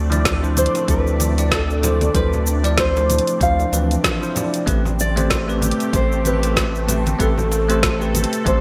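Smooth and relaxed, this sunset chillout excerpt swings gently in 4/4 as a thumb-plucked nylon-string guitar carries the melody with vintage 12-bit sampler grit and digital delay, over a lush, detuned sawtooth pad treated with chorus and phaser. A round, up-front analog bass and a bell-like, clean tine electric piano with its own delay fill out the harmony, moving from Dm9 to Am9 at 4.7 seconds. A deep house kit with a woody snare, dark hats and shaker under gated reverb enters at 0.1 seconds alongside very quiet, ringing congas and bongos, and a deep, tape-tinged electronic kick follows at 0.3 seconds, all within a bright 1980s-style digital production and moderate plate reverb.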